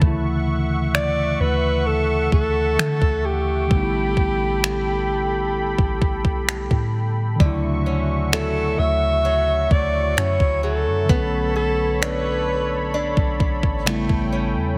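This excerpt opens on a mellow tine electric piano and a detuned sawtooth pad with chorus, resting on a soft, round 808-style bass and a clean 12-bit drum machine with finger snaps and a thumpy kick, re-recorded in a small room and placed up front. It is a tender, smooth piece of contemporary R&B at 65 BPM in D major, drifting through Dmaj9, A9sus4 and Bm9 before settling on A9. At 0.9 seconds an alto saxophone enters as the solo voice, jazz-styled with vibrato, subtone and scooped notes, its smooth top carried by a digital delay. From 7.4 seconds a picked, swing-style acoustic guitar adds boxy arpeggios, also touched by delay. The whole mix sits inside a heavily compressed, radio-like sound, giving the warm chords and deep sine bass a close, compact feel.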